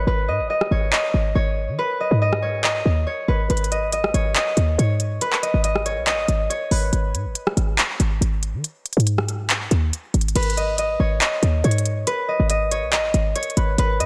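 Eerie and hard-hitting, this half-time trap and hip hop cut moves at 140 BPM in 4/4 and sits in G# minor, taken from a longer piece. A fingerpicked concert harp carries the melody in a narrow, ringing register from B4 to D#5, its acoustic tone sitting up front. Beneath it, a short 808-style bass is punchy and tight, a sine tone with a noise layer, a fast attack and a decaying tail, reaching from G#1 to D#3. The electronic trap kit comes in at 0.6 seconds with crisp hi-hats, handclaps, rim clicks and crash cymbal, produced and placed forward. The opening 3.5 seconds form a break. The harmony alternates between G#5 and G#m, with a new section arriving at 10.4 seconds. Light reverb gives the mix a bit of space.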